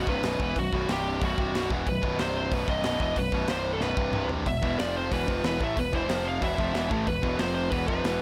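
Aggressive and heavy, this short heavy metal passage charges ahead in a straight 4/4 feel. An up-front, dark overdriven lead guitar carries the melody, its smooth tone trailed by tape echo, while two bright, picked distorted rhythm guitars, one high-gain and one tight, churn out low riffs in the background. A growly overdriven electric bass, direct and amped, sits beneath them. A polished acoustic drum kit in a small, airy room drives the pulse with a punchy kick, a medium-tuned snare, hi-hat and toms, and plays a fill from 3.8 to 4.5 seconds. At 4.5 seconds a warm, double-tracked crunchy guitar joins the riff, as the harmony shifts from alternating B5 and C5 to alternating E5 and F5 in a close, dry mix.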